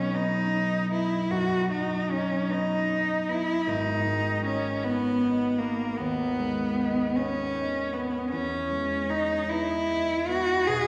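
A single rich, focused cello carries a solemn, yearning melody with bowed vibrato, set up front in this slow, rubato romantic classical duo in 12/8. A concert harp accompanies with fingerpicked, ringing chords moving from B to G#m at 3.7 seconds and on to Emaj7 at 8.3 seconds. Both instruments sit close while a long concert hall reverb gives the room a distant sense of space in this brief passage cut from a longer piece.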